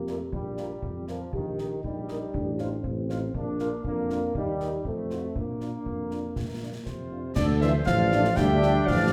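A military-style march for wind band in Bb major, this proud, festive passage moves at 119 BPM in a straight 2/4 and is cut from a longer piece. A punchy solo cornet with light vibrato carries the melody, while a mellow, close-miked euphonium sings a second line and a trombone section holds sustained chords beneath. A dark, smooth-topped tuba anchors the bass, and a French horn section fills in accompaniment from the background. Concert snare, bass drum and clash cymbals sound close and dry, the cymbals dark-toned. At 6.9 seconds an airy flute ensemble joins with a straight, tongued second line, its highs rolled off, just before the harmony turns to D minor at 7.4 seconds. The band is heard from further back in a large studio with a generous reverb tail.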